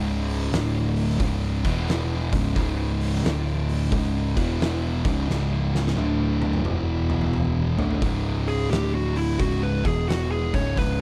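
Two fuzz-drenched guitars open this brooding stoner and doom metal excerpt with a heavy, swung riff, one dark and distorted, the other warm and distorted, over a round, punchy overdriven bass that sits deep in the low end. An oversized, low-tuned acoustic drum kit joins at 0.3 seconds with a punchy kick, fat snare, hi-hat and toms, its saturated, gritty sound filling a bright stone room that pumps around the hits. At 2.6 seconds a very quiet tonewheel organ slips in underneath with clean, piping, scooped sustained chords, colored by chorus vibrato, key click and a slow rotary speaker. The riff circles among C#5, D5 and E5 chords, and a drum fill leads into a new section where a dark, up-front fuzz lead guitar takes a short melodic solo from 8.5 seconds. The whole passage carries a crushing, slow-rolling weight and is cut from a longer piece.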